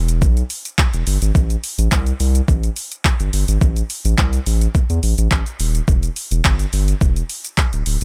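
A straight 4/4 pulse at 106 BPM drives this bittersweet dance-pop fragment in A minor, where an overdriven electronic drum kit of knocking kick, hi-hat, handclaps and shaker, re-recorded in a small room, sits up front beside a deep, thick saturated sine sub bass that pumps with sidechain compression, all in a dry, close sound.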